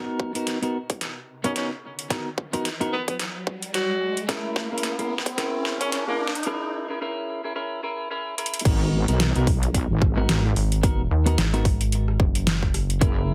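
A heavy, detuned wobble bass arrives up front at 8.7 seconds to carry the drop of this swaggering, playful glitch hop piece, cut from a longer track, at 110 BPM in G# minor with a swung sixteenth feel. Before that, a build-up pairs clean electric guitar stabs, fingered and compressed with lush chorus, sidechain pumping and delay, with a clear tenor saxophone melody whose scooped notes and vintage pop-style tone carry a touch of delay from 1.4 to 6.3 seconds. An electronic riser runs beneath the saxophone, and a short break follows before the drop. The punchy, overdriven electronic kick and a layered dubstep kit with a deep snare, metallic hats, rim clicks, toms and crash cymbal sit up front, sounding re-recorded in a small room, with drum fills from the start to 6.5 seconds and again at 8.4 seconds. A rubbery, hollow square bass with a bouncy filter pluck joins the wobble bass at 10.6 seconds, over chords moving from F#add11 and A#m7b5 to G#m7. 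The whole mix has a heavily compressed, radio-like sound in a moderate studio reverb.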